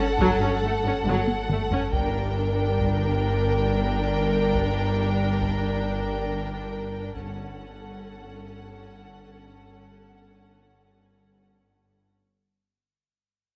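A deep, rumbling drone on G1 anchors this tense, eerie suspense cue from a film score. Its dark, ominous tone is coloured by a phaser and its own reverb, and it sustains to 12.3 seconds. Around it, bowed string sections move in 3/4 at 69 BPM: a focused violin melody sits high between F#5 and G5, a softer, expressive second violin line hovers around A4 to Bb4, and smooth, even violas fill the middle. Cellos sit in the background on G2, alongside a clear, intense double bass section on G1. Solo taiko drums, struck with heavy sticks and close yet set back in the mix, add a short fill early on and stop at 8.8 seconds. The harmony moves from A6/G to G minor and back to A6/G under moderate scoring-stage reverb that lends the strings a lush space, and this cut from a longer piece fades out from its opening moment.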